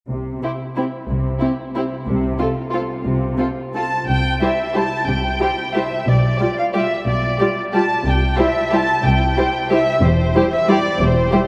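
A 3/4 waltz at 182 BPM with uneven, rubato beats sets a festive yet elegant classical ballroom mood in C major, as a lush, dark muted cello section and a lush, rich muted double bass section begin the bass line at 0.1 s, joined at 0.4 s by a veiled con sordino violin melody sitting up front, a smooth-topped second violin line and a close, soft-attacked viola accompaniment, all bowed with vibrato and bathed in a vast, echoing cathedral reverb as the harmony settles onto C at 4.1 s.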